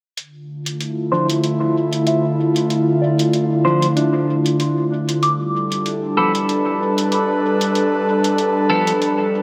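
An airy, breathy pad sits up front in this spacious, meditative ambient dub excerpt. It holds sustained chords from the start, with a slow attack, long release and a detuned, chorus-thickened shimmer over a faint noise layer. A muffled, pitched-down electronic hi-hat keeps a lightly swung pulse underneath, its compressed, sampler-style tone tape-warm and sitting low in the mix. Clean electric guitar stabs arrive at 1.1 seconds, picked and compressed and coloured by analog chorus, a low-pass filter and dub echo. From 2.1 seconds a soft, pure FM synth bell adds gentle, mellow arpeggios of fast-attack, decaying notes, blurred by chorus and a diffuse ambient delay. Filter sweeps run across the pad, guitar and bell throughout, the harmony moves from Dm to G9 at 5.2 seconds, and a lush hall reverb soaks the dreamy mix.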